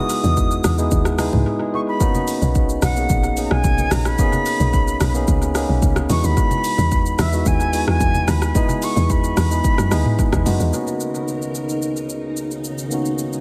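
A straight 4/4 amapiano groove at 110 BPM drives this relaxed, soulful passage in B major. Its electronic afro-pop drum kit sits up front, with a deep kick, metallic hats, rim click, shaker and toms washed in tape echo. A woody, punchy log drum bass with a dark, decaying tail anchors the low end, while very quiet congas with bright, thin skins sit close and dry beneath. A clean, direct tine electric piano holds chords that move between Emaj9 and Bmaj9, and an airy, distant concert flute sings the melody above with vibrato and tongued phrasing, both touched by tape echo. A short break arrives at 1.5 seconds, and after the flute stops at 10.5 seconds, a lush, full-bodied vintage string machine ensemble enters at 10.7 seconds with slow-attack sustained chords and ensemble chorus, all within an echo-heavy mix lightly coated in digital reverb.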